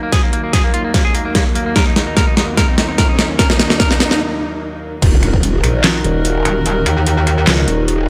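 A half-time 4/4 groove at 147 BPM drives this heavy, aggressive wobble dubstep excerpt in Eb minor, as an overdriven dubstep kit with a deep snare, metallic hats, claps, snaps and crash sits up front beside a punchy electronic kick through a build-up and drum fill. Over it, a bright, clean picked electric guitar plays a melody with dub echo, while a floating, bowed chamber string section holds rich sustained chords with sidechain pumping, and a riser and impact sound in the background. At 5.0 seconds the drop arrives with a saturated, formant-filtered growl bass, joined briefly at 6.5 seconds by a metallic FM wobble bass, both chorused and up front in a light reverb.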